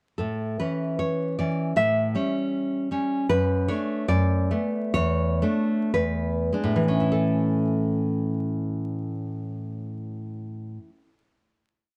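A fingerpicked nylon-string guitar opens this brief, sunny and tender romantic solo piece in 2/4, its full-bodied, deep classical tone and audible finger squeaks sitting up front as a single-line melody moves over syncopated chords, drawing out in a rubato slowdown from 2.5 seconds to a lingering final A chord at 7.1 seconds that rings until 11.3 seconds, all bathed in a moderate spring reverb within a dark production flecked with vinyl crackle.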